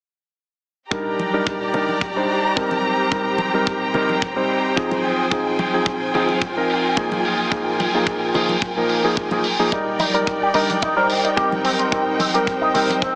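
Nu-disco at 109 BPM with a sensual, groovy 16th-note swing, cut from a longer piece, where a vintage electric grand piano with clangy bass, short sustain, sidechain pumping, low-pass filtering and tape echo sits up front beside a clear, focused bowed string section holding pumping chords over Ebmaj7, Fm7, Bb7sus4 and Cm7, while a tight acoustic kick, mid-forward hi-hat and bright hard-hand congas in the background groove under a filter sweep on the drums, joined at 9.7 s by a twangy, clean picked electric guitar with an envelope filter and subtle chorus playing a riff, all bathed in an echo-chamber reverb and squeezed into a heavily compressed, small-speaker radio sound.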